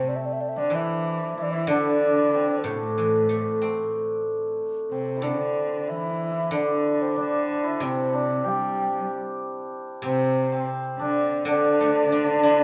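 At a steady 94 BPM in a straight 4/4, this festive, graceful piece of Chinese traditional chamber music moves in the D shang mode, in a short passage taken from a longer work. A mellow, hollow bamboo xiao carries the melody from start to finish, its end-blown, airy tone soft in attack, steady and rolled off in the highs. Beneath it, a hammered dulcimer sits up front with a shimmering, ringing second line, joined by a single bowed cello whose warm, focused voice has a smooth top and vibrato. A bright guzheng, played with fingerpicks, fills in the accompaniment with a silvery ring across the full 12.6 seconds. A light reverb gives the ensemble a modest sense of space.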